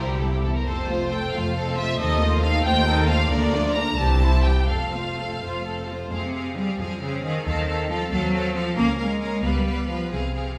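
Bathed in a wet hall reverb, this graceful, cheerful excerpt from a quick classical-period movement for string orchestra sways in a rubato 6/8 as a focused, distant first violin section carries the melody over a smooth, close second violin line, lush violas in the background, and a rich bass of cellos and double basses, before the harmony darkens at 6.1 s.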